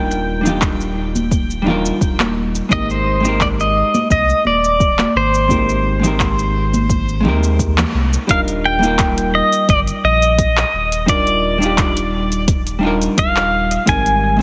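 An up-front, fingerpicked pedal steel guitar with slide, volume swells and digital delay carries the melody in this blissful, relaxed sunset chillout excerpt, over a dark, clean hollow-body jazz guitar that also has delay, a round sine sub bass, a deep layered electronic kick, a smooth R&B kit of handclaps, shaker and metallic hats, and background congas that stop at 7.9 s in the middle of a band accent that begins at 7.8 s, all framed in light reverb and a heavily compressed radio-like sound.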